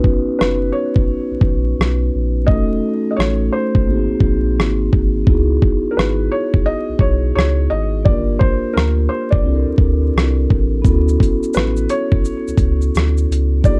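Lo-fi hip hop at 86 BPM with a swung 16th-note feel and a nostalgic, dreamy mood, this excerpt sets a soft-mallet vibraphone, metallic and ringing with its motor off and colored by cassette tape, low-pass filtering and plate reverb, against a gritty, overdriven sampler-style drum kit of thumpy kick, hi-hat, rim click and shaker, while from 0.4 seconds a round sine sub bass and a felt-muted upright piano carrying the melody with audible action noise join over jazzy chords from Bmaj9 through C#m11 to Dmaj13, all in a dark production dusted with vinyl crackle.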